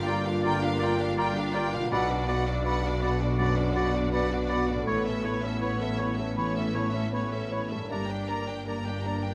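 Bittersweet and longing, this cinematic excerpt at 81 BPM moves with a rubato feel as a lush, vibrato-rich violin section carries the melody over a very quiet second violin line, clear oboe, airy flute ensemble and very quiet mellow clarinet. A bowed viola section, polished grand piano and tight French horn section fill in the background, and a very quiet, ringing thumb-plucked harp adds arpeggios, all above a close cello section and bright, intense double basses. Everything is set in a wet scoring-stage reverb through the chords Gm7, Bm, Aadd9 and Gm.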